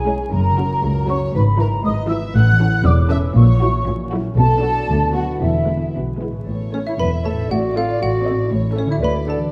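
In a straight 2/4, this playful, whimsical film cue opens with a close, smooth-topped violin section carrying the melody while a second, distant and very quiet violin line, an airy large flute ensemble, mellow ringing harp arpeggios, intimate sul tasto violas, and soft-attack cellos and double basses holding the bass fill out the texture. The flutes stop at 5.9 seconds, and at 6.7 seconds a dry, woody xylophone takes up the melody beside an up-front, vintage clarinet line, as a diminished chord adds a mischievous, magical turn. Moderate scoring-stage reverb and vinyl crackle lend the dark production an aged glow.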